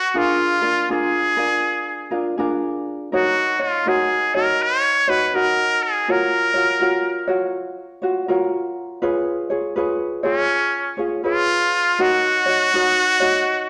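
A trumpet with a straight mute carries the melody up front, its tone brilliant yet nasal, played in a classical style with light vibrato across a range from C#4 to C#5. This is a sunny, dreamy Hawaiian piece in F# major at 81 BPM in 4/4, with a swung eighth-note feel. A thumb-plucked acoustic ukulele accompanies throughout, light and up front, sitting a little below the trumpet in level. The chords move from A#7 through D#m7, F#maj7 and C#7 before settling on F#6 at 12.0 seconds. A recital hall reverb bathes the sound, and the recording has the worn character of old cassette tape, with a warbly pitch drift. The 13.7-second excerpt is cut from a longer piece.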